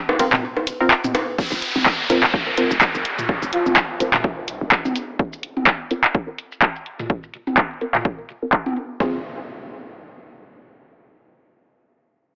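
Minimal techno with a quirky, clinical mood, cut from a longer piece and heard through a moderate plate reverb with an AM-radio coloring. Muted, deep dub chord stabs with lush chorus and delay sit over overdriven electronic bongos and toms, a hollow, bouncy FM bass that pumps with the sidechain, and an up-front punchy analog drum machine whose percussion, snare, hats and cymbals are low-pass filtered. These are joined at 1.4 s by a punchy electronic kick and a downlifter and impact. A breathy, flute-like synth lead flickers in briefly at 3.5 s, a filter sweep moves over the drums through the middle stretch, and the bass returns with a final impact at 9.0 s as the chords settle onto F minor.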